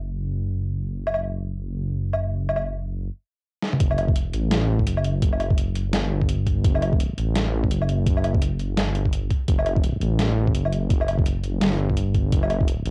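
A deep, rumbling detuned saw bass with tube saturation opens this heavy, cinematic half-time drum and bass excerpt, joined at 1.1 seconds by an up-front, gritty boom bap sampler-style kit of hi-hat, medium-tuned snare, toms and woodblock with a cassette-tape tint; after a brief stop and a drum fill, the drop lands at 3.8 seconds as a compressed, thumpy electronic kick enters beneath the swung groove, the whole mix sitting in light reverb with the character of a home cassette recording.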